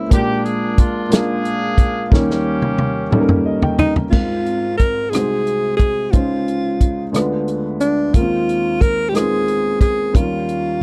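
This dry, reverent, uplifting slow gospel excerpt in 6/8 opens with a punchy, vintage horn section carrying the melody until 3.5 seconds over a woody upright piano with audible action noise and a tight, roomy soul drum kit, both of which play fills before a bright alto saxophone with light vibrato and scooped notes takes the lead from 3.8 seconds through chords such as Dbmaj9 and Ddim7.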